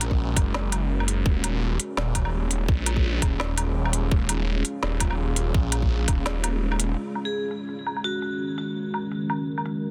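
Dark and heavy, this brief cut from a half-time drum and bass track sits at 168 BPM in Eb minor, with a swung feel over a single Eb minor chord. A deep, moody pad holds sustained chords with chorus, reverb and sidechain pumping, while a swirling, thick detuned saw bass with phaser sits up front until 7.0 seconds, joined by a tight, layered electronic kick until 6.2 seconds and a small-room kit of woody snare, crisp filtered hats and woodblock. At 7.3 seconds a metallic, ringing vibraphone struck with hard mallets adds a short up-front phrase with slow motor vibrato, 12-bit sampler grit and tape echo, all under a dense, heavily limited master.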